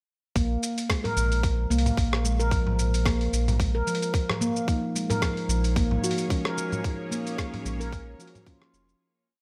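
Mystical and hypnotic, this short organic downtempo piece moves at 111 BPM in Bb minor with a gentle swing on the sixteenths. From 0.4 seconds a ringing, meditative handpan played with soft fingertips repeats a 10-step loop that drifts against the bar, its notes trailed by tape echo. Beneath it sit long gliding notes from a deep, round sub bass, a tight, overdriven electronic kick, and a gritty, tape-warm sampler-style kit layering hi-hat, shaker, low tom and rim click into an organic beat. At 4.7 seconds muted felt-like synth keys enter with dark quartal chords, held and pushed with syncopation, carrying chorus, tape echo and sidechain pumping as the harmony moves to Gbadd9 over Bb. A tense, bright bowed-like drone joins at 5.6 seconds with slowly shifting chords, vibrato, phaser and its own reverb, while the mix, otherwise fairly dry, fades out from 6.1 seconds to the end.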